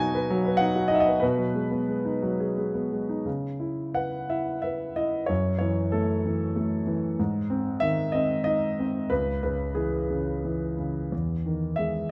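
A smooth, vintage-toned grand piano sits up front in a moderate recital hall reverb, with a ring that lingers about 1.7 seconds after each phrase. This short cut from a longer classical piece is a lyrical solo in C# minor, moving in 3/4 with a rubato feel that drifts between 84 and 98 BPM. The mood is bittersweet and cool, though the instrument itself has a warm character, reaching from C#2 up to G#5. The opening passage rests on B and G#m7/B before a new section begins at 3.3 seconds. From there the harmony travels through C#m7, F#m7, G# and C#m, then settles on Emaj7 at 11.1 seconds before the piece is cut off at 12.1 seconds.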